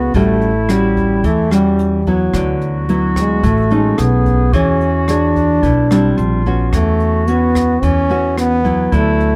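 Sophisticated and relaxed, this bossa nova excerpt moves at 109 BPM in a straight 4/4 in A major, cut from a longer piece. A punchy, forceful trombone carries the melody up front, its scooped notes close-miked and full of jazz inflection, while a clarinet plays a softer second line above it with light vibrato, a subtone and a vintage character. A thumb-plucked nylon-string guitar in classical style supplies the accompaniment through chords such as A13, D69, E13 and a closing A69/E. An upright bass plays pizzicato with a woody tone, and a brushed drum kit from a small room adds hi-hat, rim click and a boomy kick from 0.1 to 9.3 seconds. The sound is dry and intimate, with close, detailed microphones and little reverb.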